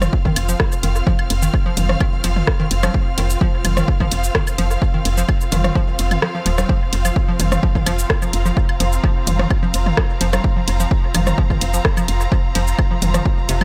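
Minimal techno at 128 BPM in a straight 4/4, this short cut from a longer piece feels clinical and hypnotic, built on an up-front, tape-warm electronic kick that runs from 0.1 seconds and briefly drops out between 6.2 and 6.7 seconds. A woody, round FM bass sits low and dark beneath it, its fast-attack notes decaying and pumping against the kick through sidechain compression. A punchy analog drum machine supplies hi-hat, ride cymbal, rim click and shaker, while a layered, overdriven garage kit adds congas, toms, woodblock and more rim clicks, both parts trailing dub echo. In the background, a hollow, bouncy square-wave pluck with detuning, a noise layer, a sub octave and chorus repeats a short riff, also pumping and echoing. Above it all, a biting, lush symphonic string section bowed with vibrato lends an intense orchestral sheen, breathing with the sidechain, in a dry, echo-heavy mix.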